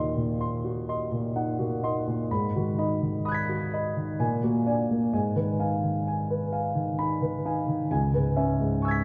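A warm concert grand opens this impressionist classical fragment, unfolding alone in triple metre with free, rubato timing and a mysterious, hazy mood. Its deep bass anchors harmonies that drift from Ebm6 through Abm7 and a restless Bbaug7 before settling on Dbm7 near 7.9 seconds. A wet concert-hall reverb, heard from further back in the room, softens the edges, and the passage is clearly cut from a longer piece.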